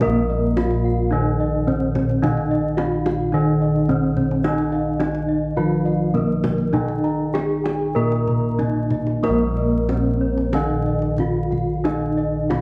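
A straight 4/4 pulse between 92 and 109 BPM, driven by the tight, vintage, hard-handed strokes of the kendang, carries this serene, ceremonial passage of Javanese gamelan in Bb slendro, cut from a longer piece. A bronze metallophone states the melody with the shimmering beats of paired tuning while a second metallophone accompanies lower down, and a third metallophone joins padded, mellow bossed gongs in soft high arpeggios. Round, up-front bossed gongs anchor the bass, all set in a dark production with vinyl crackle and a moderate hall reverb, and a new section begins at 9.2 seconds.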